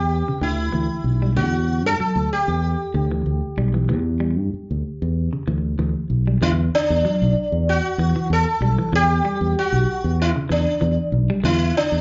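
Defiant and intense, this short afrobeat passage is cut from a longer piece and rides a lightly swung sixteenth-note feel in 4/4. A buzzing, plectrum-plucked sitar carries the melody up front, its sympathetic strings shimmering under a slapback echo. A fingered electric bass sits equally forward with a round, dark, direct and amped tone, holding the low end throughout. Entering at 0.3 s, a clean semi-hollow electric guitar plays fingered arpeggios further back in the mix, its hollow-body voice also touched by slapback echo. The harmony rests on Em7 before moving to E7sus2 at 6.4 s, opening a second section. The sound is that of a live gig heard through the venue's PA, with club reverb and a muffled top end that dulls any high sparkle.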